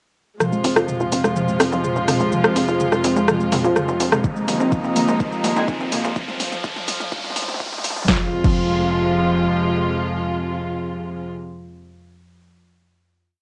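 At a straight 125 BPM, this dark, cinematic melodic techno piece builds from an Abadd9 chord, with intimate, lightly vibrato-touched chamber strings holding sustained chords over a mellow, evolving analog drone, a woody, wave-folded pluck spinning a chorused, delay-echoed 16-step arpeggio through a filter sweep, a tight, nasal sequencer bass galloping in sixteenths in the background, sparse detuned brass stabs with phaser, an overdriven deep house kit of punchy snare, programmed hats, rim, shaker, toms and crash, and a deep four-on-the-floor electronic kick joining at 4.2 s as a riser and impact rise behind it, until the strings, drone, bass and stabs settle onto a final F minor chord at 8.1 s, all coloured by a cassette-tape tone.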